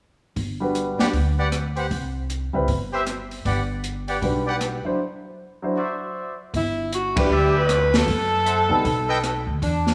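Big band swing jazz with an energetic, joyful feel, this excerpt opens on a woody pizzicato upright bass, a boomy kick and dark cymbals from an open drum kit, and a polished grand piano comping with short sustain, while a clear, tight trumpet section with vibrato punctuates the harmony with stabs from 1.0 seconds. After a break at 5.0 seconds, a dark saxophone section with light vibrato takes the melody up front at 6.6 seconds, and a band accent lands at 7.1 seconds before a turnaround through F#m7b5 and B7alt. A moderate recital hall reverb gives the small room ambience a sense of space.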